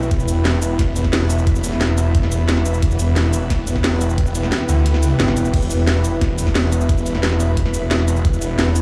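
Heard as if played on a big sound system in a bare room, with light reverb and a small-room ambience, this short cut of dark technical drum and bass in E minor moves at 177 BPM with a futuristic, mechanical mood. A snarling, growling distorted saw bass sits up front with tube saturation and sidechain pumping, while an up-front drum kit of cracking snare, bright hats, shaker and crash cymbal plays alongside a knocking electronic kick that drops out between 4.9 and 5.5 seconds. Behind them, a swarming, tense drone of sustained chords evolves in the background with its own reverb and pumping, and an airy, breathy pad with chorus adds soft texture.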